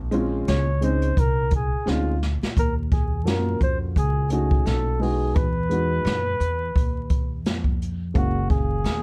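Pizzicato upright bass opens this cool, smoky jazz-hop excerpt at 86 BPM, with its woody, bright low notes giving a loose 4/4 swing on the sixteenths. A worn, slightly detuned upright piano and a brushed drum kit follow almost at once. The piano's accompaniment is mellow and intimate, with audible action noise. The drums sit up front, with a boomy kick, a medium-tuned snare and hi-hat heard in a small, roomy space. A breathy flugelhorn enters at 0.5 seconds and carries a vintage-sounding solo with light vibrato and scooped notes, while a drum fill at 1.9 seconds leads into the next section at 2.6 seconds. The harmony moves from Bbm7 through Ebm9, B9 and Emaj9 to Gbmaj9, wrapped in dark production, light reverb and a haze of vinyl crackle.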